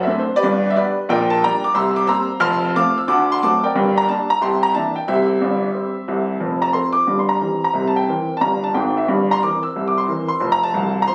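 A bouncing swing in four drives this exuberant stride piano performance, a short passage cut from a longer piece that runs 11.1 seconds. The upright piano plays alone throughout, ranging from the deep bottom of the keyboard up into its bright upper register, with a woody, natural tone and long sustain. The harmony moves through a busy jazz turnaround of dominant sevenths and minor chords before landing on C, and a second section beginning at 6.4 seconds circles around C7 before resolving home to F. The piano sits up front in the mix, caught on a phone in the room and dressed with a light touch of studio reverb that gives it a lively, intimate feel.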